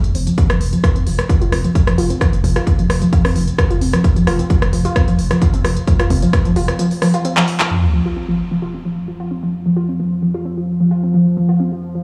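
A straight 4/4 pulse at 131 BPM drives this intense, industrial peak-time techno cut from a longer piece: a heavy, tape-warm kick sits up front, with handclaps, smooth pumping hi-hats and rim clicks, over a thick, sine-based sub bass on F1 that pumps beneath a low-pass filter. A warbling, lo-fi sawtooth pluck riff, detuned and ring-modulated with chorus, delay and a filter sweep, runs from F3 to F4 throughout. After a drum fill, the beat drops out at 7.7 seconds into an electronic sub drop and impact, and at 8.7 seconds a deep, moody, wave-folded pad drone on F3 fades in slowly through chorus, all set in a huge, roomy reverb.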